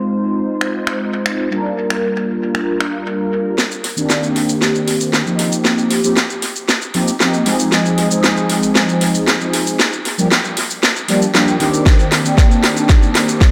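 A mellow, detuned sawtooth synth brass opens this groovy, sleek nu-disco excerpt in C minor at 116 BPM, sounding round and dark through chorus, phaser and dub echo over chords like Ab6, Gm7, Cm9 and Eb69, before an up-front house kit of cracking snare, metallic hats, finger snaps and shaker builds through a long drum fill from 3.6 seconds, with a punchy electronic kick arriving at 11.9 seconds, all set in an echo-heavy mix with a wet spring reverb.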